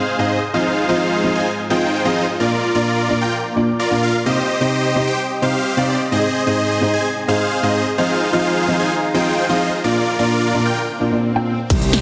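Festival progressive house at 129 BPM in a straight 4/4, this euphoric, emotional excerpt is cut from a longer piece and built over a chord cycle of Ab, Fm7, Bb and Cm. From the opening, a huge, detuned supersaw riff sits up front with sidechain pumping, a low-pass filter and tape echo, while a lush unison pad holds sustained chords in the background, colored by chorus and phaser with its own pumping, as a filter sweep moves across the analog synth pad. At 0.2 seconds a felt-muted upright piano joins as accompaniment, its soft, intimate, dark tone and short sustain also carrying tape echo and sidechain pumping. An electronic swell builds in the background from 11.0 seconds and lands on an impact at 11.7 seconds, where a fat, nasal, saturated analog bass on C2 arrives alongside a punchy electronic kick and a big-room dance kit with crisp hats, snare, cabasa and crash cymbal, both re-recorded in a large room and placed up front. 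A wet hall reverb and a dense, heavily limited master give the whole a glossy, expansive sheen.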